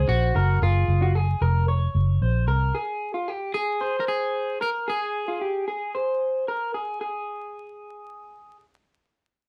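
Opening together, a twangy, fingered electric guitar at the edge of break-up carries a melody with warbly pitch drift and slapback echo, while a lo-fi, compressed guitar through a small old amp picks arpeggios with the same echo and a dark, round, foam-muted vintage bass sits up front until 2.7 s, all over Gbmaj7 moving to a rootless Fmadd11 in this youthful, bright fragment of jangly indie pop at 113 BPM in 4/4, with the melody ending at 6.4 s and the arpeggios at 8.6 s in a dry, close 1970s-style recording flecked with vinyl crackle.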